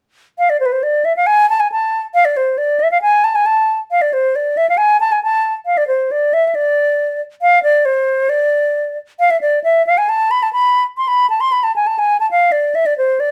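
Bittersweet and soulful, this klezmer excerpt in 2/4 has a straight feel and features a lone silver concert flute, up front, playing from 0.4 to 13.3 seconds. Its airy, mellow tone, soft attack and expressive vibrato carry a strain heard twice, at 0.4 and again at 7.4 seconds. A moderate studio reverb gives the flute a modest sense of space.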